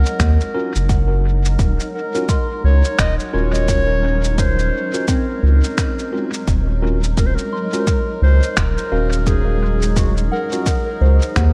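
Ambient dub at 86 BPM in 4/4, with a swung 16th-note feel and a meditative, hazy mood, this excerpt rests on a single Ebm9 chord in Eb dorian, tuned to A4 = 438 Hz. A warm, classical-style solo clarinet carries the melody through dub echo. Beneath it, a cloudy granular pad sustains blurred, evolving chords, while a soft FM synth bell traces pure, gentle arpeggios with chorus and tape echo in the background. A round analog bass, dark and up front, anchors the low end as the most prominent part. Muffled, pitched-down electronic shaker and finger snaps enter at 0.1 seconds with dub echo, joined at 0.2 seconds by a deep, overdriven electronic kick drum in small room ambience. From 0.5 seconds, a worn, slightly out-of-tune tine electric piano adds mellow stabs with dub echo, and the overall mix stays fairly dry.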